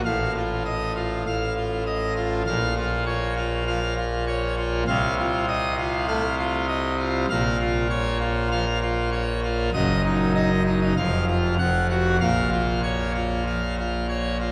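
A solo pipe organ on full organ opens this stormy, majestic classical toccata excerpt in Bb minor at 99 BPM, its brilliant mixtures and baroque voicing, with audible chiff, sitting up front in a wet church reverb as the harmony moves from F7/A through Bb minor and Eb minor to a brief unharmonised passage at 11.0 seconds before settling back on Bb minor.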